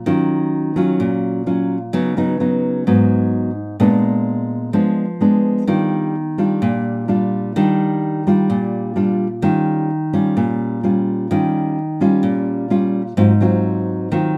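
A solo nylon-string guitar opens this relaxed, sunny bossa nova fragment, cut from a longer piece, sounding full-bodied and thumb-plucked with a classical touch. It sits up front in a straight 4/4 feel, moving through rich minor-ninth, suspended and altered dominant chords in its first few seconds. At 5.7 s the harmony settles into a brighter stretch built on a major ninth chord, then shifts to a dominant ninth around 9.4 s before landing on a sixth chord near 13.2 s. The guitar stays alone throughout, ranging from its low register up into the middle of the instrument. A moderate reverb from a large studio room adds air around the acoustic tone, giving the performance a live presence.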